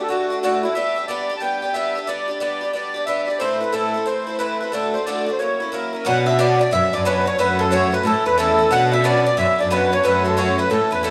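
Celtic folk hornpipe, wild and driving at 181 BPM with a swung feel, in which a reedy, sweet accordion carries the melody up front over a boxy, shimmering twelve-string guitar with audible finger squeak, until at 6.1 s the tune turns to B minor and a rich bowed cello, a bright bowl-back mandolin in the background and a very quiet, airy wooden flute join in, all in a rough home demo mix with small-room ambience and moderate plate reverb, cut from a longer piece.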